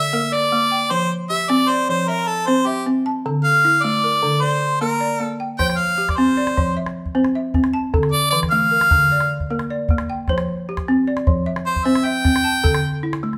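A straight 12/8 pulse at 102 BPM in dotted quarters drives this hypnotic, joyful fragment of West African string and xylophone music in F major, where a clear, close-miked harmonica solos up front in jazz style with light vibrato, tongue slaps and scooped notes over woody, round balafon arpeggios struck with rubber mallets, joined at 5.6 seconds by a small, dry calabash, all played live together in a large studio with moderate reverb as the chords cycle through Bb, F, C and Dm.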